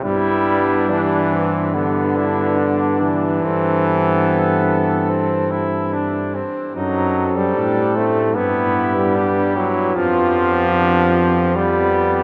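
Classical brass-band hymn in G major, serene and warm, moving at a rubato 65-77 BPM in 4/4, where a mellow cornet with light vibrato carries the melody from the background over a distant flugelhorn second line and a clear, vintage-toned euphonium, while a smooth-topped trombone and a soft-attacked tuba bass sit up front, all bathed in a cathedral reverb as the harmony moves from G through Am7/G and F#dim to G7/F by 10.0 seconds in this short passage cut from a longer piece.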